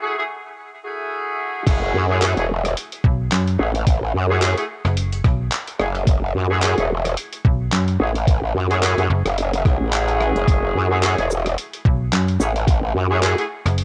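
Glitch hop at 109 BPM in F# minor with a swaggering, funky swing, this excerpt opens on vintage, tightly played horn stabs over an F#m9 chord, with cassette tape coloring and analog delay, before the drop at 1.7 seconds brings in a gritty, pitched-down boom bap kit of crash, handclaps, hi-hat, rim click and shaker, a thumpy, up-front electronic kick, and an aggressive, saturated growl bass, joined at 3.0 seconds by a snappy, metallic FM slap bass, all set in the light reverb of a home cassette recording.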